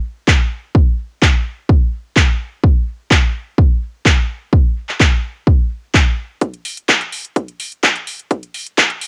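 A punchy, layered electronic kick drum sits up front in this joyful, feel-good house piece at 127 BPM in straight 4/4, arriving at 0.3 s alongside an equally forward house drum kit of handclaps and metallic, sidechain-pumped hi-hats, both parts high-pass filtered and tape-colored, while a very quiet acoustic egg shaker with group handclap plays throughout in a live room, and the dry home-cassette recording moves into a build-up at 6.4 s before the cut from a longer track ends.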